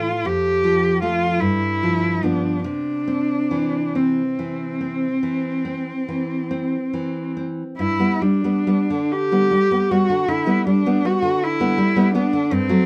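A light reverb gives this short passage, cut from a longer piece, a gentle sense of space, with both instruments placed up front. It is a serene, romantic duo in 12/8, moving slowly and freely with rubato at roughly 43-55 BPM counted in dotted quarters, tuned to A4 = 439 Hz. A single bowed cello carries the melody between C4 and G4, its expressive vibrato and portamento lending the line a warm tone. Beneath it, a full-bodied nylon-string classical guitar provides fingerpicked accompaniment from F2 up to C4. The harmony moves from F through G7 to C in C major, then settles onto G as the music shifts into G major for a second section starting at 7.8 seconds.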